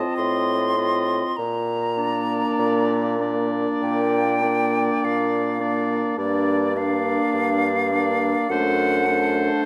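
Close, detailed microphones capture a wind quintet in a recital hall, with a moderate reverb of about 1.4 seconds giving the blend a gentle sense of space. This is a tender, lyrical slow romantic movement in Bb major, moving in 4/4 at 48-53 BPM with a flexible rubato feel, heard as a short cut from a longer piece. An airy concert flute carries the melody up front, its hollow tone shaped by vibrato and crisp attacks, while a clear oboe with vibrato sings a second line beneath it. The close-miked clarinet and the distant, roomy French horn with light vibrato supply the accompaniment, and a warm bassoon anchors the bass near the front. The harmony opens on F7/A, settles onto Bb at 1.4 seconds, and later passes through Gm7 before turning to D7/F# as the passage ends.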